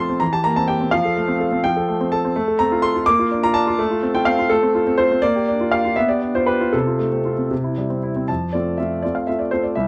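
Cheerful and graceful, this short passage from a classical-period piano sonatina in F major moves in 6/8 at around 76-85 BPM, shaped with gentle rubato and tuned slightly low at A4 = 438 Hz. A solo concert grand carries it alone from 0.0 to 9.9 seconds, ranging from C2 to D6 with a clear, intimate, polished, up-front tone, deep bass, long sustain and audible action noise. Light reverb and a dark, warm production frame the harmony as it moves through a cadence on C before settling onto F at 8.3 seconds.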